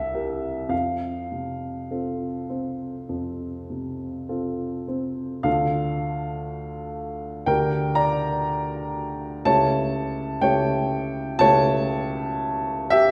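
A warm baby grand piano carries this romantic nocturne alone, its open tone and long sustain sitting up front. The mood is nostalgic and dreamy, with a rubato feel in 4/4 that lets the phrasing breathe, and the playing spans from the low C2 up to Bb5. The opening passage moves from a C7 chord into F by 0.7 seconds, then at 5.5 seconds the music turns toward a minor shading, passing through Dm and Gm over D before settling on an A7 chord with C# in the bass. A wet concert hall reverb surrounds the instrument with a lingering decay, placing the listener further back in the room. The piece is cut from a longer work and runs to 13.1 seconds.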